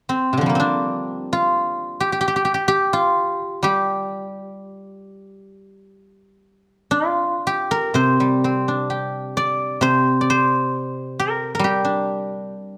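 A solo guzheng opens this short excerpt of Chinese traditional music, its silvery, ringing strings plucked with fingerpicks and sitting up front in close, detailed sound. The piece moves in free time, contemplative, with a sense of longing that colours every phrase. Set in a G yu mode and tuned slightly below standard pitch, the instrument ranges from C3 up to D5, letting deep tones and bright upper notes both speak. A first section runs until 8.0 seconds, and a second section carries the music on until the guzheng falls silent at 12.8 seconds. Light reverb gives the acoustic instrument a gentle halo while keeping its intimate, warm character in focus.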